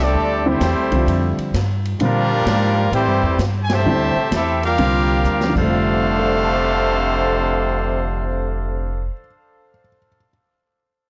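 A dry, cassette-tape sound frames this short cut from a joyful, swinging big band number. A bright, smooth-topped trumpet section carries the melody through a touch of tape echo while a trombone section with light vibrato plays a second line beneath, over woody pizzicato upright bass up front and natural, short-sustain baby grand piano accompaniment that carries on to the end. A distant, roomy drum kit with a punchy kick and ride cymbal swings behind them, the band hits an accent at 3.6 seconds, and a drum fill at 5.2 seconds leads into a new section.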